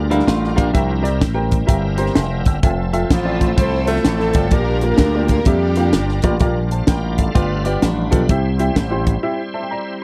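Uplifting and hopeful, this swung uptempo gospel piece rides on a punchy, up-front fusion drum kit with a high-tuned snare and a bright slap bass through an envelope filter, while a shouting tonewheel organ holds lightly overdriven chords through a slow rotary speaker with chorus vibrato, and an intimate baby grand piano with audible action noise supplies the accompaniment. A clean, compressed electric guitar adds a brief second line in the background, and from 3.1 seconds a mellow, breathy tenor saxophone carries the melody alongside a lush, distant bowed string section. At 9.2 seconds a break opens with a piano fill over the organ, all captured in a dry, close 1970s-style studio sound with light reverb.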